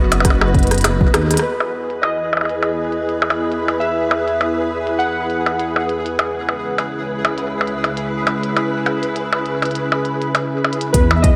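Playful and wistful, this IDM excerpt at 101 BPM in E major rests on silky string-machine chords and a pulsing gated texture in the background, while clicky, tape-warm glitchy drums sit up front; a rumbling detuned saw bass and soft electronic kick open alongside a drum fill and return at 10.9 seconds, and warbling lo-fi synth keys with tape echo carry the melody from 1.4 to 5.8 seconds, all washed in a lush hall reverb.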